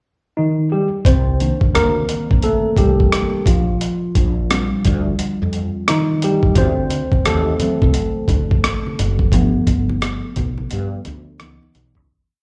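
A worn, slightly out-of-tune tine electric piano opens at 0.4 s with rootless chords and carries a solo through this smooth, soulful neo-soul R&B piece at 87 BPM with a swung 16th feel in C dorian, joined at 1.1 s by a growly, round fretless bass with ensemble chorus and a gritty, compressed boom bap kit with a thumpy kick and ghost notes, while very quiet, damped congas add soft touches from 6.6 s before the live club sound fades out.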